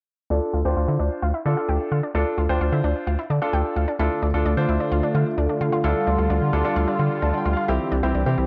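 Pop in a driving, melancholic mood, this excerpt pairs an intimate, clear grand piano, its action noise audible through a cassette-tape haze, with a deep, round analog bass and a nasal, wave-folded synth pluck spinning chorused arpeggios through tape echo. A filter sweep colors the opening until 4.0 seconds, when a bright, evolving pad with detuned sawtooth layers and a slow attack enters with sustained chords. The piano breaks into a short fill at 7.0 seconds just before the harmony moves from D minor to C, all set in light digital reverb with the lo-fi character of a home cassette recording.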